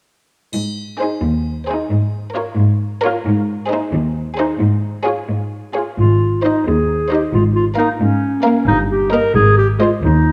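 A roomy clarinet enters at 6.0 s with a clear, close double bass section in this quirky, magical 6/8 film cue excerpt, where a lush cello section holds the bass from 0.5 s, a brief triangle rings at the opening, and two chamber violin sections (one intimate and sul tasto on the melody, one focused on a second line) float above smooth, distant violas in a dark, reverberant scoring-stage sound.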